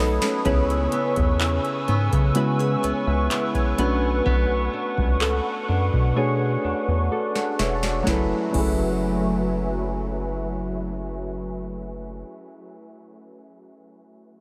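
A barely audible round pluck, soft chorused electric-piano-like synth keys, a hollow flute-like pad, fingerpicked nylon-string guitar arpeggios with analog delay, and a rubbery, bouncy square bass open this sensual, late-night contemporary R&B excerpt, joined at 0.2 s by a booming analog drum machine fill. The mix is soaked in huge dreamy reverb until the deep kick, crisp snare and metallic hats drop out at 8.8 s, shortly after the harmony settles onto F#m11.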